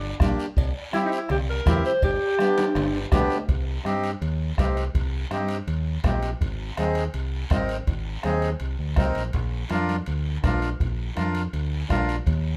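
A passionate, driving cumbia in C minor at 164 BPM opens with a breathy alto saxophone carrying the melody up front, its tone warm with light vibrato yet set back in a roomy space, over a fingered electric bass that sounds direct and warm. From 0.2 seconds a reedy, dark accordion fills in the accompaniment alongside a percussion bed of soft-beater bombo, bright hard-handed congas, ringing metal cowbell and timbales heard from a distance, and a raspy guiro with a band-limited, vintage character. The saxophone line stops at 3.1 seconds, during a drum fill from 2.6 to 3.5 seconds that leads the band into a new section. From there the harmony moves through Cm, Ab and Bb while the accordion, bass and percussion carry the groove to the end of this cut from a longer piece. A moderate studio reverb gives the whole a natural sense of space.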